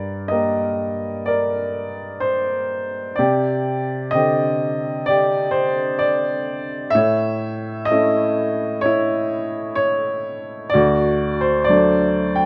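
Reflective and dark, this short cut from a longer classical piece is a lyrical solo for upright piano, played with a freely breathing rubato over a slow four-beat pulse. The single piano carries everything from the first moment to the close at 12.5 seconds, ranging from a deep low register up into the upper treble. Its tone is woody and natural, with a long sustain that lets each chord ring, and it sits up front in the sound. The harmony moves from G minor through C suspended and A major before settling on D at 10.7 seconds. Close, detailed microphones and a light reverb keep the instrument intimate and present.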